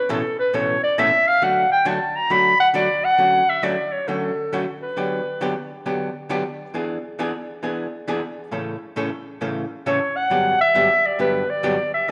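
Drenched in a wet echo-chamber reverb, this short excerpt puts a vintage-toned clarinet up front, its subtone warm and soft in attack, with vibrato and a slapback echo. It's a swinging, down-home country tune in D major at 135 BPM, where the clarinet carries a jazz-style melody while a dark, clean, hollow-body electric archtop guitar picks the accompaniment beneath it. The clarinet falls away at 5.7 seconds and returns at 9.9 seconds, and the changes drift through Dmaj7, Gmaj7/D and E7 before settling on A and Gmaj7.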